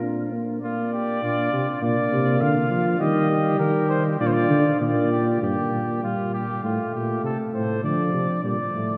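In this brief excerpt from a longer classical brass canzona in Bb major, the tuba stands out most, sitting up front with a warm, smooth-topped bass line and light vibrato throughout the 9 seconds. Above it, a mellow trumpet carries the melody with a soft attack and light vibrato, sounding distant and roomy before it stops at 5.4 seconds. A warm flugelhorn with vibrato weaves a second line in the same faraway space, while a euphonium supports the texture with a mellow, smooth-topped accompaniment. The imitative writing moves at 100 BPM in a straight 4/4 with a joyful, elegant mood, and at 5.4 seconds the harmony shifts from Bb and Eb toward Gm7, Am7 and Dm. A dark, warm production and a long, wet cathedral reverb let the ensemble bloom and linger in a resonant space.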